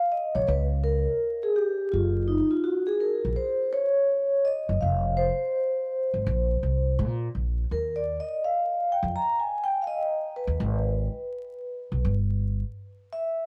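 Jazz-hop with a mellow, nocturnal mood and a lazy swing, this excerpt features soft-mallet vibraphone taking a solo across its full 13.5 seconds, ringing and airy with a slow motor vibrato. A woody, growly pizzicato upright bass sits up front beneath it from 0.4 to 12.6 seconds, while a dreamy mix soaked in plate reverb and vinyl crackle floats the shifting, unsettled chords.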